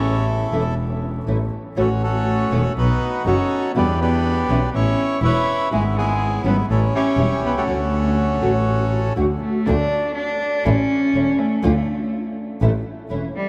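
A rubato 4/4 pulse at 122 BPM carries this elegant, passionate tango excerpt in D major, where a dark, airy bandoneon sings the melody up front until 9.1 seconds, a distant, nasal bowed cello with gut-string tone, period-style light vibrato and tape echo weaves a second line before taking a solo from 9.7 seconds, an intense, close bowed double bass with vibrato anchors the low end, and a full-bodied fingerpicked nylon-string guitar with analog chorus accompanies in the background, set in a dreamy mix soaked in cathedral reverb.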